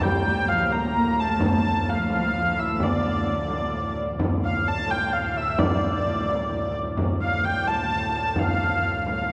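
Mysterious and driving, this medieval dance in D minor moves at 86 BPM in a straight 6/8. A nasal, reedy hurdy-gurdy carries the melody up front, a biting, gut-string viola da gamba adds a second line until 4.0 s, a soft, shimmering pipe organ on string celeste stops holds a low drone, and a distant frame drum keeps the pulse, inside the long, wet 5.4-second reverb of a church or concert hall.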